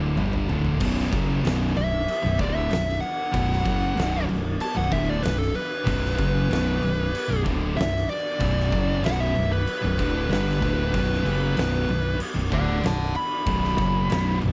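A straight, heavy 4/4 pulse drives this ominous, brooding stoner and doom metal passage, cut from a longer piece, which opens on a drum fill before settling into the groove. The oversized, low-tuned acoustic kit has a punchy kick, a fat snare, dark cymbals, crashes and toms, set in a bright stone room with a pumping character. Beneath it, two thick fuzz guitars, one dark and one warm, join a scooped, double-tracked high-gain guitar to grind out the riff in the background, while a growling, overdriven picked bass churns through the lowest register. From 1.8 seconds a fuzz lead guitar sits up front, its solo line colored by slapback echo high above the riff. Faintly underneath, entering at 0.6 seconds, a very quiet, tense string-like drone holds sustained chords with a detuned sawtooth edge, vibrato and its own reverb, while the overall mix stays dry and close.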